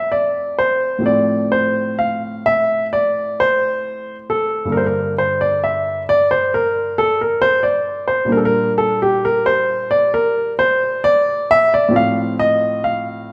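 Serene and flowing, this 13.3-second fragment of a baroque-style classical suite movement features a solo baby grand piano, intimate and up front with audible action noise and short sustain, played with rubato in 4/4 and tuned to A4 = 438 Hz as it moves through F and G minor harmonies in a wet recital-hall reverb.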